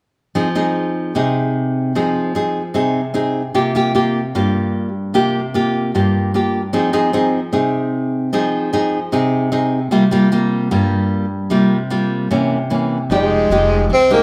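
Melancholic and intimate, this bossa nova excerpt in F minor moves at 151 BPM with a straight feel. An up-front, fingerpicked nylon-string guitar with fresh strings plays alone from 0.3 seconds, circling Fm7 and C7sus4 before touching C7b9. At 13.1 seconds a warm tenor saxophone enters up front on the melody with subtone, vibrato and scooped notes, joined by a woody, thumpy pizzicato upright bass on gut strings, all heard as a band playing live in one large studio with moderate reverb.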